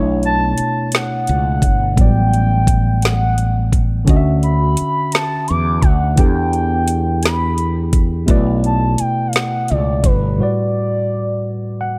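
Intimate and sensual, this slow six-eight R&B excerpt sets a worn, slightly out-of-tune tine electric piano, heard through a combo amp, against a bright fretless electric bass with analog chorus and an electronic drum kit of knocking kick, woody snare and metallic hats, all kept up front in a dry, close sound. Above them a soft-attack portamento lead, detuned and sustained with vibrato and chorus, glides smoothly through chords that move from Bm11 through A13sus4, Dmaj9 and Em7. The drums drop away at 10.2 seconds and the bass at 10.4 seconds, opening a break, and the electric piano plays a short fill from 11.4 seconds.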